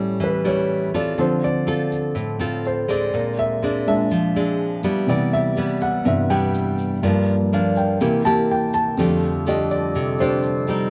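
A full-bodied, fingerpicked nylon-string guitar and an intimate grand piano with audible action noise and deep bass open this wistful, melancholic bossa nova fragment, the piano taking a solo throughout while a grainy, bright egg shaker enters at 1.2 seconds and a dark, distant woodwind section arrives at 9.0 seconds with sustained chords, all captured in a dry, close 1970s-style studio sound with light small-room reverb.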